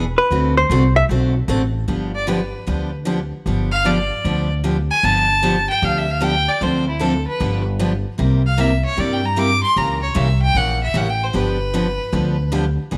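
A swung 4/4 pulse at 152 BPM drives this cheerful, down-home western swing excerpt in G mixolydian, where a growly, thumpy pizzicato upright bass and a bright, full-bodied picked dreadnought acoustic guitar with audible finger squeak carry the accompaniment, while a dark, clean, compressed hollow-body electric jazz guitar plays a brief lead from 0.2 s before a clear, earthy bowed fiddle with light vibrato takes the solo from 2.2 s to 12.5 s over D7, G7, Dm7, C7 and C#dim7 chords, all set in a small room with moderate echo-chamber reverb.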